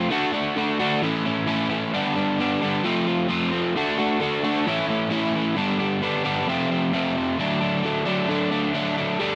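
A crunchy, overdriven electric guitar sits up front in a moderate studio reverb, its picked, double-tracked tone sounding warm. This carefree, upbeat rock excerpt moves at 132 BPM in a straight 4/4, the lone guitar cycling through D, A, G and F chords across its roughly 9 seconds. Cut from a longer piece, the guitar ranges from F2 up to G4, returning to D at 7.4 seconds.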